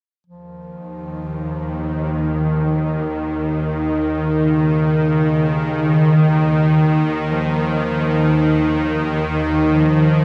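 Dark ambient drone at a slow 51 BPM in 4/4, dark and cavernous in mood, cut from a longer piece. A bowed-like drone enters at 1.1 seconds and sits up front, spanning Eb2 to Eb3 with a tense, nasal, sawtooth edge, a unison noise layer, vibrato and its own built-in reverb, its slow attack giving way to long sustained tones. Beneath it in the background, a warm bass clarinet carries the melody in a classical solo style from 0.3 seconds, confined to the narrow span of Db3 to F3 and coloured with tape echo. The clarinet fades in across the whole passage, emerging gradually behind the bright drone. A wet cathedral reverb with a 4.8 second decay surrounds the recording, lending it a vast, hollow space.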